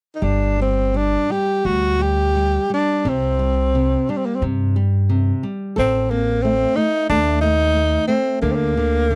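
A warm, close-miked tenor saxophone leads this passionate, mournful fado-style ballad excerpt with a jazz-style solo full of vibrato, soft attacks and scooped notes, played rubato over fingerpicked acoustic flamenco guitar and a woody, steel-strung pizzicato upright bass with tube saturation that sits up front beside the horn, all captured in a dry, close 1970s-style studio sound with light reverb.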